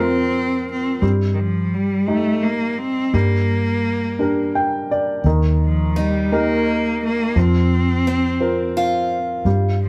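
Recorded live in one room with a light reverb, this tender, heartfelt acoustic folk-pop ballad in 6/8 is a short section cut from a longer piece. An up-front cello, bowed by a single player with vibrato and a rich, focused, smooth tone, carries the melody over a woody, intimate upright piano whose slightly detuned strings and audible action noise sit close, while a dark, round, punchy foam-muted electric bass anchors the low end. At 6.0 seconds a boxy, warm archtop acoustic guitar joins with picked arpeggios over the Eb chord, shortly before the harmony returns to Bbsus2/F.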